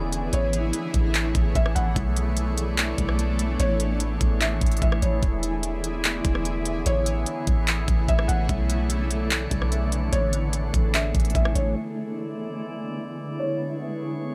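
Ethereal and spacious, this atmospheric cloud-rap excerpt moves at 147 BPM in a half-time feel, with a shimmering, granular ambient pad holding sustained chords over Amaj7, Bm11 and E7 and a drifting glass-harmonics texture floating above while a felt-muted upright piano plays an intimate melody with audible action noise and tape echo. A soft, round 808-style bass and an up-front trap kit with knocking kick, crisp hats, handclaps and rim clicks drop out by 11.7 seconds, the piano lingers until 13.8 seconds, and a filter sweep carries the pad and texture to the close at 14.3 seconds.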